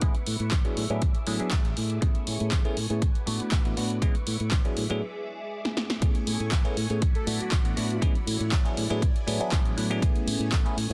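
Filtered disco house at 120 BPM in A major, this joyful, sunny excerpt moves in a straight 4/4 feel over a cycling progression of C#m7/A, E7/A, Amaj7 and D6/A. An up-front, punchy electronic kick with tape-warm weight anchors a punchy analog drum machine of overdriven snare, handclaps and pumping hi-hats, while a fingered electric bass, amped, warm and punchy, holds the low end. A bell-like tine electric piano adds bright, clean chords roughened by 12-bit sampler grit and a phaser, and a lush string machine ensemble spreads sustained, chorused sawtooth chords above, with both keyboards breathing under sidechain pumping. A filter sweep opens the track until a short break and drum fill lead into the drop at 6.0 seconds. At 7.1 seconds a fat, mellow analog synth brass phrase sits in the background with chorus, vibrato and digital delay. The dense, heavily limited master keeps the mix dry and close.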